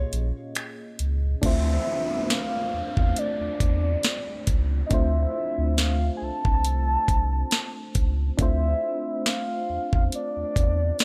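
This moody, sensual contemporary R&B piece, cut from a longer work, opens with a brief break at 69 BPM in D minor. Over a Bbm7 chord, a warbling FM electric piano with tremolo and a vintage tone plays beside a round sine sub bass and a fingerpicked nylon-string guitar whose full-bodied arpeggios, touched with digital delay, stop at 1.2 seconds. An electronic drum kit sits up front with a knocking kick, sharp snare, metallic hats, finger snaps and crash cymbal, giving the 4/4 groove a lightly swung sixteenth-note feel. At 1.4 seconds the harmony moves to Dm9 and an electronic downlifter enters. From 1.5 seconds a soft octave-layered synth lead carries the melody, its dark, wave-folded tone colored by chorus, phaser and vibrato. The deep, mellow bass and the lead stay prominent in a dry, close-sounding mix.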